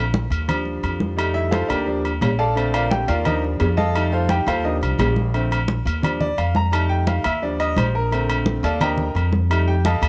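A straight 4/4 salsa groove drives along at 173 BPM in this joyful, danceable clip cut from a longer piece. The bright upright piano takes a solo across the full 10.1 seconds, its brilliant, woody tone carrying a long sustain and a cassette tape coloring as it ranges from D3 to Bb5 over a looping cycle of Ebmaj7, F7 and Bbmaj7. Sitting up front with it, the upright bass adds a dark, thumpy gut-string foundation. Congas enter at 0.1 seconds with a thick-skinned, damped sound, and agogo bells and timbales join at 0.3 seconds, ringing with a vintage, band-limited metal shell tone. The home cassette recording places the band in a small room with audible ambience.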